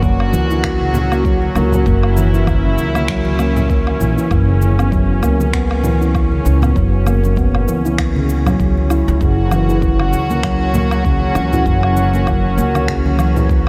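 Soaked in a huge ambient reverb, this dreamy, hypnotic organic downtempo excerpt rides a swung groove as an up-front handpan of ringing nitrided steel plays filtered, delayed arpeggios under a sweep that runs throughout, over woody, growly pizzicato upright bass, a deep electronic kick in the background, layered electronic shaker, woodblock and finger snaps, very quiet congas and bongos played with soft hands, and a distant, reedy chamber string section holding sustained gut-string chords that pump with sidechain, shifting from F# to Bsus2/F# at 4.3 seconds and back at 9.2 seconds.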